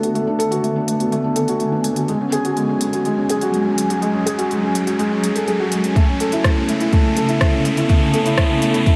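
A felt-muted upright piano sits up front, playing a soft, mellow riff with thick felt and audible action noise, its notes trailed by delay. Behind it, a granular cloud pad holds blurred, detuned sustained chords with a slow attack and long release, pumping against a sidechain and swept by a filter throughout. This short piano and strings electronica piece, cut from a longer track, moves at 124 BPM in a straight 4/4, building up from the start as the harmony shifts from Bm7 to F#madd9 and then to Aadd9/E. A deep house drum kit ticks along with smooth, high-passed hats and a rim click, while a round analog bass stays barely audible underneath and an electronic riser enters at 1.1 seconds. At 6.0 seconds a deep, layered electronic kick drum arrives up front, anchoring the intimate, hypnotic mood inside a dark production bathed in a huge ambient reverb.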